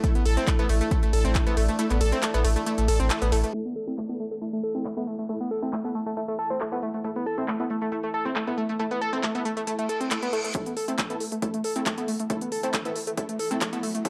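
This driving peak-time techno excerpt at 137 BPM opens on an A5 chord in the middle of a drop, with a screaming, guitar-like overdriven synth lead riffing up front through distortion, tube saturation and tape echo. Beneath it, punchy detuned supersaw stabs sit in the background behind a low-pass filter, subtle chorus and analog delay, while a deep, moody ambient pad adds a dark, detuned haze with a moving notch and built-in reverb. An analog electronic kick and a layered kit of handclaps, smooth hi-hats and ride cymbal drive the groove, with a round sine sub bass underneath until 3.4 seconds. The lead, stabs, pad, bass, hats and cymbals pump against the sidechain. After the kick drops out, a filter sweep moves across the supersaw stabs while downlifters, reverse cymbals and risers drift in the background, and the kick returns at 10.5 seconds for the build-up. The mood is hypnotic and intense, captured as a gritty hardware recording with light reverb.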